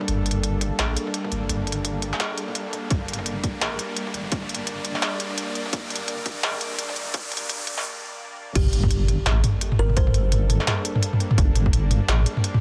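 A deep, saturated wobble bass sits up front throughout this tense, heavy half-time drum and bass excerpt at 170 BPM in G minor, its detuned sawtooth and sine tones thickened with chorus. Behind it, a bright, nasal string-like drone holds a sustained Gmadd9 chord with vibrato and built-in reverb, pumping against a sidechain. An industrial drum kit brings a clanging snare, crisp hats, crash and toms with a swung sixteenth-note feel, and a hard-clipped electronic kick joins at 2.9 seconds. A filter-swept build-up carries a background riser into a short break at 7.8 seconds, and the drop lands at 8.6 seconds with an impact and a brief woody, hollow kalimba phrase ringing through delay. The dense, heavily limited mix carries only light reverb.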